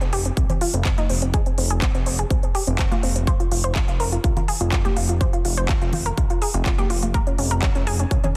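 Progressive house at 124 BPM in F minor, this short cut from a longer piece feels dreamy and expansive, moving in a straight 4/4. An analog pluck with a round, wave-folded tone plays arpeggios between C4 and C5, dressed in chorus, dub echo and sidechain pumping, with a filter sweep running across it from start to finish. Beneath it, a fat, saturated analog bass of detuned sawtooth and square waves holds the low end from F1 to C2, its tube saturation and sidechain pumping giving it a thick, nasal drive. A big-room dance kit supplies crisp hats and handclaps, a punchy, up-front electronic kick arrives at 0.4 seconds, and close, dry congas with hard hands sit in the background from 0.5 seconds, pumping to the sidechain. The harmony rests on F5 before shifting to Db/F at 7.1 seconds, all set in light digital ambience within a dense, heavily limited modern master.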